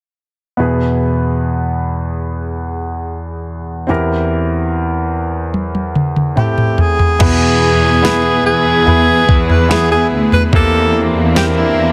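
Emotional and melancholic, this pop ballad excerpt opens on a warm, vintage-toned concert grand piano with deep bass, joined at 5.5 seconds by a smooth, electronic R&B drum kit whose fill brings in soft kick, fat snare, toms and crash cymbal. A clear alto saxophone carries the melody from 6.4 seconds with scooped, jazz-style notes, and at 7.2 seconds a soft-attack, sul tasto string section floats in the background while a dark, lush cello section supplies bowed bass with vibrato and portamento. Light reverb and small room ambience sit within a dense, heavily limited modern master.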